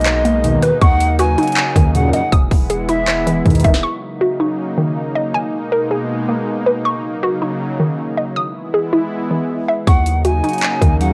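Opening on a smooth, warbling analog pad, a hollow, detuned square-wave pluck arpeggio, an airy pan flute second line, a deep sine 808-style bass and an overdriven trap kit with hard-clipped kick, sharp snare, metallic hats, handclaps and rim click, this brooding, melancholic half-time trap excerpt at 159 BPM in Eb phrygian adds dark ring-modulated synth brass stabs from 0.4 seconds, then thins to pad and pluck after a drum fill at 3.5 seconds before the flute, bass and drums return at 9.9 seconds, heard through a home cassette recording with digital ambience.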